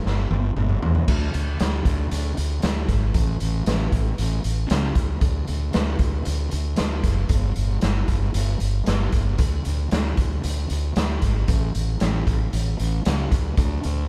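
A growly, overdriven fuzz bass sits up front from 0.1 s, moving between F#1 and E2 over a gritty, saturated garage drum kit with a rolled-off top, punchy kick, medium-tuned snare, crash, hi-hat and toms that opens with a fill lasting until 1.1 s, driving this wistful, carefree 115 BPM indie rock excerpt in straight 4/4, played live by a band in one room with light reverb.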